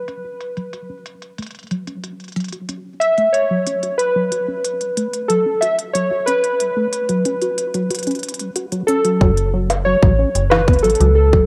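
IDM at 92 BPM in F# minor, cerebral and melancholic, cut from a longer piece and heard through a cassette home recording with a lush hall reverb. Warbling, detuned synth keys carry a nostalgic melody with chorus and tape echo, while a rubbery, resonant acid bass spins arpeggios under a filter sweep, and an organic electronic kit of bongos, crisp hats and a woody snare sits muffled by low-pass filtering. At 9.2 seconds the harmony settles on F#m as a metallic FM bass and a tight, up-front electronic kick enter together.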